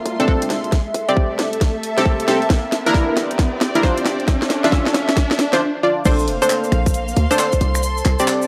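A dry, gritty hardware recording with vinyl crackle carries this moody, skippy two-step UK garage cut at 135 BPM, where punchy detuned sawtooth chord stabs with chorus and analog delay sit up front over a tight sine 808-style bass with tube saturation, a layered garage kit of cracking snare, hi-hat, handclaps, finger snaps and crash cymbal, and an electronic kick drum. An ethereal pad and lush bowed strings pump in the background, and an electronic riser builds alongside a drum fill until 5.6 seconds, shortly before the drop at 6.1 seconds brings in a grainy cabasa.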